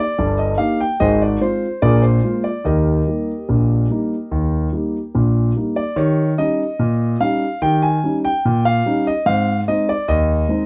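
Cheerful and jaunty, this brief excerpt of ragtime piano in Eb major moves at 73 BPM in a straight 2/4, with a warm concert grand playing solo up front, its deep bass anchoring a range from G1 to Ab5, and light reverb keeping a dry, close 1970s-style studio sound as the first section gives way to a second at 6.0 seconds, where an Eb7 chord leads toward Ab.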